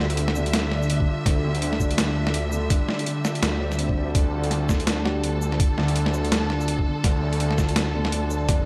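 Soaked in lush hall reverb, this dreamy, tense and cinematic half-time drum and bass excerpt in D minor at 166 BPM sets sidechain-pumped, distant bowed strings against soft felt-muted upright piano arpeggios trailed by diffuse delay, a deep, rumbling detuned saw bass, a gritty, overdriven sampler-style kit of hi-hat, shaker and high-tuned snare, a thumpy electronic kick entering at 1.0 s, and a very quiet, round FM synth lead on G4 at 5.1 s.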